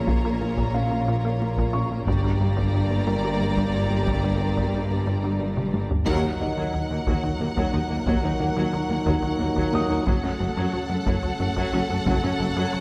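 A tense, brooding cinematic cue blending orchestral and electronic elements, moving at 60 BPM in 6/8 over Bbm, Gm, Ebm and Gbm harmonies, with lush symphonic violins, distant violas, clear cellos and rich double basses bowing beneath a soft, felt-muted upright piano with audible action noise and digital delay, a warbling lo-fi pluck playing arpeggios, a punchy, nasal analog bass riff and close, dry taiko drums struck with heavy sticks. After a drum fill, a band accent at 6.1 s brings in a focused chamber violin section carrying the melody, mellow French horns and bright trombones holding sustained chords, and a very quiet dark tuba on the bass line. A moderate scoring-stage reverb gives the orchestra a sense of space in this short cut from a longer piece.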